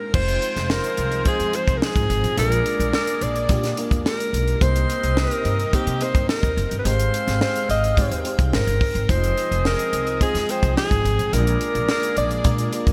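A tight, dry funk drum kit with a high-tuned snare drives a straight 4/4 groove beside a woody pizzicato upright bass, both up front, in this slick, urban slice of polished 1980s jazz-funk pop. A jazz-style alto saxophone with vibrato carries the melody over a dreamy FM electric piano with a soft pad layer and lush chorus, while a mellow, vintage horn section plays a second line and a very quiet sawtooth string machine sustains the chords. The bright digital production sits in light reverb and studio ambience, moving through Fm7, Bb7, Cm7 and Abmaj7 before the piece cuts off at 12.9 seconds.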